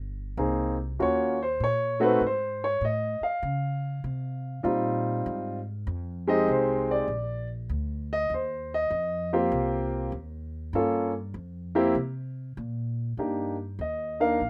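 Smoky and swinging, this jazz piano trio fragment, cut from a longer piece, has a woody pizzicato upright bass on steel strings sitting low beneath a concert grand piano that enters at 0.4 seconds, up front and open, with deep bass and long sustain. The piano takes a solo feature through lush extended chords such as Abmaj9, Dbmaj9#11 and Eb69, before a new section arrives at 13.2 seconds on a rootless Cm7. Light reverb and a rough home demo mix give the sound an intimate, unpolished feel.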